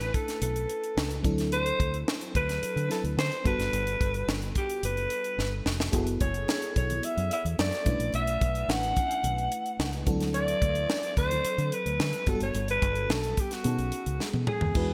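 Nocturnal and slick, this short cut from a polished 1980s jazz-funk pop track sets a raspy, growling alto saxophone up front with vibrato, carrying the melody over a lush, dreamy FM electric piano with a soft pad layer and subtle chorus, while a foam-muted fingered electric bass anchors the moving jazz chords. A tight funk drum kit with a high-tuned snare and gated reverb drives the groove, marked by fills at 5.4 and 14.2 seconds, and very quiet, ringing congas join at 5.9 seconds. The bright digital production carries a light reverb sheen.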